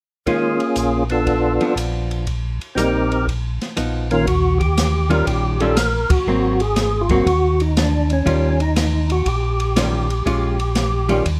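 Soul jazz organ trio with a swinging, greasy feel, where a fat, lightly overdriven percussive tonewheel organ with key click and slow rotary speaker carries the melody over a dark, compressed hollow-body archtop guitar, a round, mellow organ bass line entering at 0.8 seconds, and a smooth acoustic drum kit with dark cymbals and a boomy kick, all in light reverb with a band accent at 6.0 seconds.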